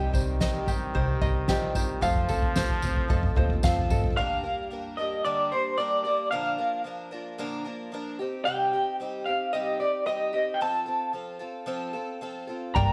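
A wistful, bittersweet indie folk excerpt opens with a build-up in which a nasal straight-muted trombone, a felt-muted upright piano with audible action noise, a barely audible fingerpicked steel-string guitar, a shimmering octave-doubled twelve-string, mellow ukulele arpeggios, woody pizzicato upright bass, a boomy soft-mallet drum kit playing a fill and a jingly tambourine gather, with the piano adding its own fill from 3.4 seconds, before the others drop away by 4.2 seconds and a slightly broken-up, lo-fi electric guitar through a small old amp carries the melody with tremolo and slapback echo over the bright twelve-string in light studio reverb, while several parts return briefly at 12.8 seconds.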